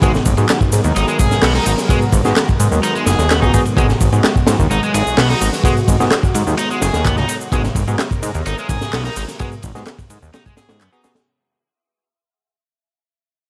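A crunchy breakbeat drum kit sits up front, its high-tuned snare, tight kick, hi-hat and dark ride cymbal sounding saturated and gritty with a rolled-off top, like a small room captured on hardware. This swaggering, energetic breakbeat cut comes from a longer piece and stays in a single drop over one G#m7 chord, with a softer house kit layering handclaps, shaker and ride underneath. A fat, detuned sawtooth bass also sits up front, thick and sustained with a fast attack and a filter sweep. Above it, a bright, overdriven electric guitar plays a picked riff through tube saturation and analog delay, while a bell-like tine electric piano adds clean, direct stabs through its own delay. In the background, a swirling, warbling analog pad holds slow-attack chords, colored by phaser, chorus, vintage 12-bit sampler grit and sidechain pumping. The dry mix carries vinyl crackle, and the whole clip fades out from 6.3 to 11.3 seconds.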